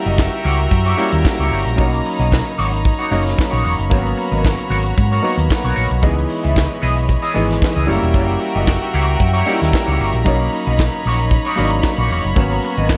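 A round, dark hollow-body electric bass sits up front in this danceable, driving disco fragment at 113 BPM, playing alongside a tight funk drum kit with a high-tuned snare, kick, hi-hat and handclaps, a clean picked electric guitar coloured by wah and lush chorus, a natural grand piano that plays a brief fill at 5.0 seconds, and a close, earthy chamber string section holding bowed chords with light vibrato over changes such as F#7b9, Bmaj9 and G#m11, set in light studio reverb.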